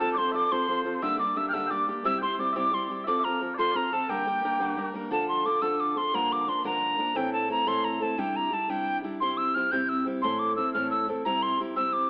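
A Celtic jig in 6/8 at 117 beats per minute, counted in dotted quarters, drives along with a straight feel in G dorian, and the mood is wild and pushing forward. A mellow wooden whistle carries the melody throughout, up front with an airy, woody tone, a soft attack, rolled-off highs and an expressive straight tone. Small bagpipes play a sweet, continuous second line with vibrato beneath it, dropping out at 4.9 seconds. A fingerpicked steel-string acoustic guitar, also up front, gives warm, concert-style accompaniment across the whole passage, moving through chords such as F, Gm, C, Dm, Gm7, Am and Cadd9. The sound sits in a moderate recital hall reverb but comes through with an AM radio character, and this short piece is cut from a longer performance, shifting into a new section at 5.1 seconds.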